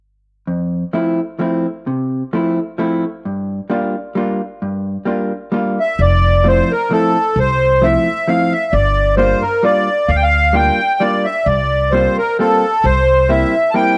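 A nostalgic, charming musette in F major at 132 BPM, swung lightly in 3/4 and cut from a longer piece. A dark, clean hollow-body jazz guitar opens alone at 0.5 s with compressed picked chords, joined at 5.8 s by a reedy, sweet accordion carrying the melody with its light tremolo tuning, and at 6.0 s by a woody pizzicato upright bass with tube saturation. The home cassette recording carries a faint mains hum and moderate spring reverb, while the harmony moves from Fmaj7 and Gm7 toward C7sus4 and C7.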